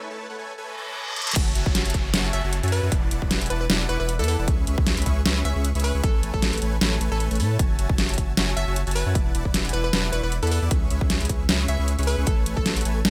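Swung at 55% on the sixteenths and felt in half-time at 154 BPM, this bright, euphoric future bass excerpt in A major opens with a filtered build-up in which a huge, detuned supersaw riff pumps against the sidechain while a reverse cymbal and downlifter sit in the background, before a drum fill at 1.2 seconds tips into the drop at 1.4 seconds. There a punchy, overdriven electronic kick joins a layered dubstep kit with a deep snare, crash, hi-hat and toms, the kit sitting up front alongside a thick, saturated sub bass, and a hollow, bouncy square-wave pluck carries the melody from 2.3 seconds with chorus and digital delay. The chords cycle through Amaj7, F#m7, E7sus4 and C#m7 in a dry mix.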